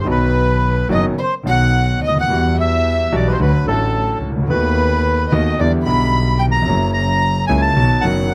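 Pushed and pulled in a rubato 4/4, this short tango fragment, cut from a longer piece, feels sultry and tense. A reedy, vintage-toned bandoneon carries the melody up front, its band-limited sound sitting close to the ear. A single bowed violin adds a softer second line in the same register, sweetened with vibrato, portamento and gentle attacks. A polished concert grand piano supplies the accompaniment with a present, clear tone, deep low notes and short sustain. Beneath it, one bowed double bass holds a smooth, even bass line with its own vibrato, while the harmony passes through chords such as Emadd9, B7/D# and F#7 before settling on B, and close, detailed miking with little reverb keeps the 8.3 seconds intimate.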